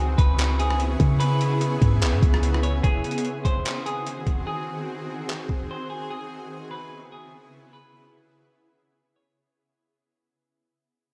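Spacious and ethereal, this atmospheric cloud-rap cut moves at 147 BPM in a half-time 4/4 feel in C# minor. A shimmering, detuned ambient pad with chorus and sidechain pumping holds sustained chords over a breathy, wind-like noise texture, while a clean semi-hollow electric guitar carries the melody through tape echo and the chords move from C#m7 to G#7 and back. Up front, a boomy sine 808-style bass drops out at 2.8 seconds as the piece begins to fade, and a gritty, pitched-down sampler-style drum kit of thumpy kick, handclaps, hi-hat and rim click, overdriven and compressed, runs until 5.6 seconds in a light digital ambience.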